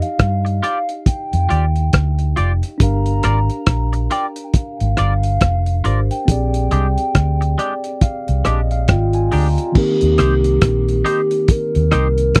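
Tender and sweet, this short lovers rock reggae excerpt moves at a relaxed 69 BPM in 4/4 with a swung sixteenth feel, set in Eb major over chords running from Ebmaj9 through Gm7 and Bb13 to Eb6. A hollow, woody synth lead with a clarinet-like quality carries the melody, its soft, sustained tone given vibrato, chorus and tape echo. Beneath it, a mellow tine electric piano supplies the accompaniment and steps forward with a fill from 7.1 to 9.8 seconds. The cloth-damped drum kit sits up front, muffled and gritty with dark cymbals, a tight kick, hi-hat, rim clicks and a crash. A round, foam-muted fingered bass enters at 0.2 seconds, punchy and dark, while a clean, twangy electric guitar adds compressed stabs coloured by analog chorus. The whole has the dry, close feel of a 1970s studio with only light reverb.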